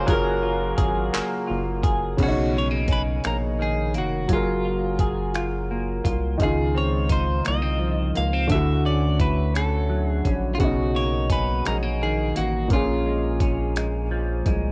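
Intimate and sensual, this slow six-eight R&B passage in B lydian, cut from a longer piece, moves at 57 BPM with a picked, compressed clean electric guitar melody carrying warbly pitch drift, a dark, fingered semi-hollow guitar line colored by analog chorus and delay, a warm, present grand piano with long sustain, distant, roomy horn stabs that drop out at 1.8 seconds, a rubbery, nasal square-wave bass sitting up front, and a gritty, thumpy soul sampler-style drum kit with overdrive, kick, finger snaps, handclaps, hi-hat and crash, captured as a home cassette recording with digital ambience.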